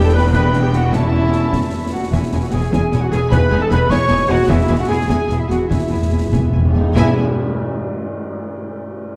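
In a straight 6/8 at 94-102 BPM, counted in dotted quarters, this heroic, adventurous film-score passage in E major is cut from a longer piece. Its chords move from G/E through A/E, C#m/E and G#m/E before settling on E. A lush violin section carries the melody in the background, joined by a second violin section, a pure, hollow flute and a dark, distant clarinet on supporting lines. Underneath them, mellow French horns hold sustained chords, a very quiet viola section accompanies, and a ringing harp plays arpeggios. Close, bowed double basses and cellos anchor the bass alongside soft-mallet timpani, while snare, bass drum and bright clash cymbals enter at 0.3 s. The music slows from 3.9 s, a timpani fill leads into a full band accent at 7.0 s where a tam-tam rings out, and the whole passage sits in a dark, moderately reverberant scoring-stage sound.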